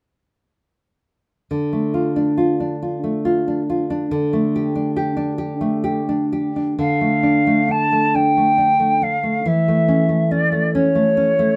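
A romantic duo for flute and classical guitar in D minor, this elegiac, yearning fragment moves in a slow, rubato 6/8 at 45 BPM, with the full-bodied, fingerpicked nylon-string guitar opening alone at 1.5 s on Dm and Dsus4 chords before the pure, tongued concert flute enters with a melody played with vibrato at 6.8 s over Dm and A/E, both parts sitting up front in light reverb until 11.6 s.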